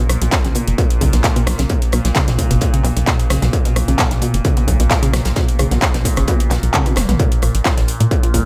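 A distorted electronic kick drives this hypnotic peak-time techno cut up front, arriving just after a dark, punchy sawtooth sequencer bass and a lush, detuned unison pluck riff with tube saturation and dub echo, both pumping against the kick, over a nasal, resonant drone with moving overtones, metallic-hatted electronic handclaps, rim clicks and toms, a background acoustic kit with a high-tuned snare, a filter sweep throughout and a drum fill at 6.7 seconds.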